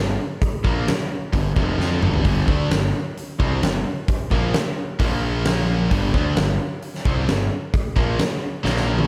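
A huge arena drum kit, up front with a fat snare and punchy kick, enters at 0.4 s to drive this anthemic, energetic hard rock fragment at 131 BPM, adding fills at 1.8 and 8.6 s, while a bright, scooped high-gain distorted guitar and an overdriven hollow-body guitar set further back play a riff over G5 and Bb5 chords, anchored by a growly fuzz-driven picked bass, all in a moderate hall reverb that lends a big arena sound.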